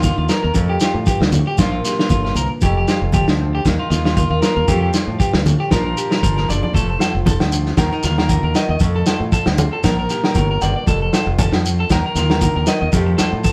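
Carefree highlife guitar band at 116 BPM with a swung sixteenth-note feel in F mixolydian, where a dark, full-bodied fingerpicked nylon-string guitar and a slightly broken-up electric guitar playing picked arpeggios ride over a bright, punchy fingered electric bass and a muffled, lo-fi vintage drum kit up front that plays a short fill at 6.2 seconds, while low-tuned congas in the background, a grainy shekere and, from 7.0 seconds, ringing agogo bells, also in the background, fill out this moderately reverberant live-room excerpt.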